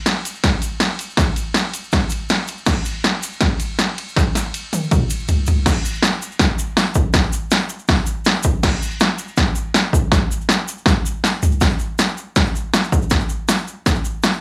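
A punchy, tape-warm analog drum machine sits up front in this swaggering, gritty rock excerpt, its dry kick and snare carrying a straight 4/4 groove with hi-hat, ride, crash and toms and breaking into fills from 4.2 to 5.7 seconds and again at 11.2 seconds, while a grainy, bright tube shaker sits close yet in the background of a small room with moderate studio reverb.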